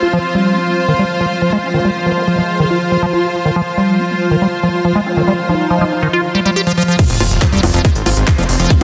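Intense and hypnotic, this psychedelic trance excerpt at 140 BPM opens with a squelchy, resonant acid bass riff up front, an evolving, morphing wavetable pad with phaser and ensemble chorus, and a clear, lush bowed string section over an F5 chord, all pumping to the sidechain, while a nasal, formant-filtered wobble bass joins in the background at 1.6 s before the drop at 7.0 s brings a tight, tape-warm electronic kick, a garage kit of crisp hats, bongos, handclaps and crash, an impact, a sub drop and a fat, saturated, detuned sawtooth bass, all bathed in a lush 1.8-second hall reverb and a dense, heavily limited master.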